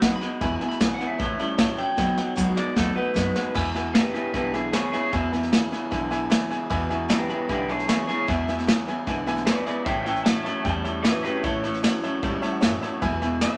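A twangy, slightly broken-up electric guitar carries the melody from 0.2 seconds, with a clean electric guitar solo arriving at 3.6 seconds, over a second lo-fi electric guitar playing a low riff in this upbeat, rollicking rockabilly cut at 152 BPM in E major. A vintage brush kit sits up front with dark cymbals and a punchy kick, adding a fill at 2.0 seconds, while a thumpy gut-string upright bass and a full-bodied picked steel-string acoustic guitar fill out the rhythm. A brilliant upright piano stays in the background with brief fills, and the whole is set in moderate studio reverb.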